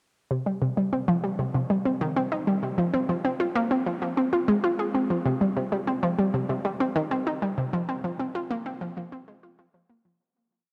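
Expansive and hypnotic, this short ambient piece in C minor moves at 97 BPM in a straight 4/4, tuned slightly low to A4 = 438 Hz. A single analog pluck carries everything from 0.3 seconds onward, cycling through a repeating 16-step sequence that spans C3 to Ab4. Its tone blends detuned sawtooth and square waves with a noise layer, and a filter pluck with fast attack and short decay gives each note a round, bright snap that sits up front. Chorus and delay thicken the synth, while a vast, wet reverb with a 7.4-second tail bathes the sequence in a huge ambient space. The whole piece fades out from 6.9 seconds, dissolving into the lingering reverb by 10.2 seconds.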